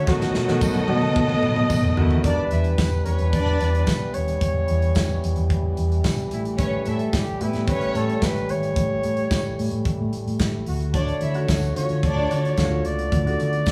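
Danceable and driving, this disco excerpt opens with a drum fill on a punchy, polished kit while a scooped, lightly vibrato flugelhorn carries the melody over lush, dark bowed strings, sustained chords from a warm French horn section, a round fingered electric bass, a bright, jingly tambourine in the background and an intimate grand piano heard only until 2.3 seconds and again from 11.3 seconds, set in a reverberant room.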